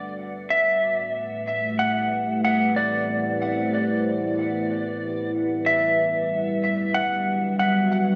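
Hazy and meditative, this brief ambient dub excerpt pairs a clean, dark electric lap steel guitar playing a slide melody with dub echo against a deep, detuned pad built on a sub octave, holding sustained chords with chorus and slow attacks. Both parts sit up front for the full 8.2 seconds, moving from Gmaj7 to Am7 and back to Gmaj7 at 5.7 seconds. The echo-heavy mix is bathed in a moderate plate reverb over a small room.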